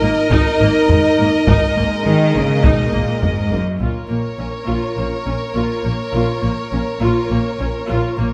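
Heroic and relentless, this brief cut from an epic orchestral film score moves at 103 BPM in 4/4, opening on an Absus2 chord before settling into Bb minor at 3.8 s. A clear chamber violin section carries the melody over a lush symphonic violin second line, a distant viola accompaniment, a rich cello section and focused double basses, while a punchy French horn section holds sustained chords until 7.5 s. A close, dry taiko ensemble struck with hard sticks pounds from 0.3 s to 4.9 s, all within the moderate reverb of a scoring stage.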